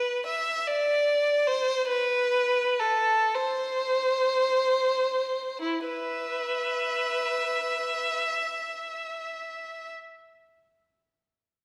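A lush hall reverb with a 1.5-second tail surrounds a single bowed violin placed up front, its tone rich and focused with vibrato. This meditative, mournful classical fragment for unaccompanied violin moves freely in a slow, rubato 6/8, anywhere from 21 to 51 dotted-quarter beats per minute, and it slows through the opening 5.6 seconds. The line stays between E4 and E5 before a second section takes over until 9.1 seconds, the sound ending at 9.9 seconds as the cut from a longer piece closes.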